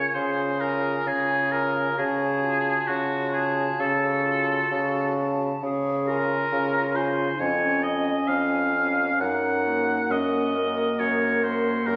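Lyrical and serene, this 12-second rubato slice of a slow romantic wind quintet movement sets an airy, distant silver flute melody in the background behind an up-front clear oboe with vibrato on the second line and a punchy bassoon bass, while a warm, smooth-topped French horn and a roomy clarinet carry the accompaniment under chords moving from Db through Gbm/Db to Gb, all heard in recital-hall reverb on a dull-sounding phone recording made in the room.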